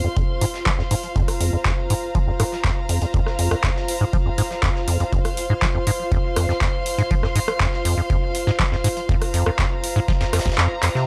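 Hypnotic and raw, this 121 BPM acid house excerpt rides a squelchy, resonant square-wave acid bass riff under a constant filter sweep, pumping with tube saturation against an intimate, sul tasto chamber string section on an F5 chord, while a deep electronic kick re-recorded in a large room, a booming analog drum machine with metallic hats, handclaps and rim clicks, and a very quiet, compressed breakbeat kit of hi-hat and snare drive the dry, gritty mix until the kick drops out at 10.6 seconds and a drum fill lands at 10.8 seconds.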